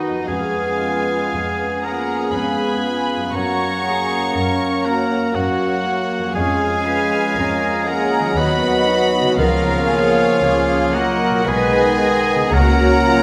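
This is a slow, romantic classical movement for symphony orchestra in F# major, tender and serene, moving at 59 BPM in 3/4 with a flexible rubato feel, heard as a short cut from a longer piece. A chamber violin section carries the melody up high with light vibrato, a soft attack and an intimate, close sul tasto tone, while a second, floating symphonic violin section and a clear solo oboe shape secondary lines around it. A mellow, hollow flute ensemble with airy straight tone and a clear clarinet add further lines in the background. Dark, woody violas and a solo bassoon fill in the accompaniment, a mellow French horn section holds tight sustained chords, and a ringing, fingerpicked concert harp plays arpeggios beneath, with rich cellos and distant double basses bowing the bass sul tasto. Very quiet, close and dry timpani join at 9.4 s, and a moderate scoring-stage reverb gives the orchestra a gentle sense of space.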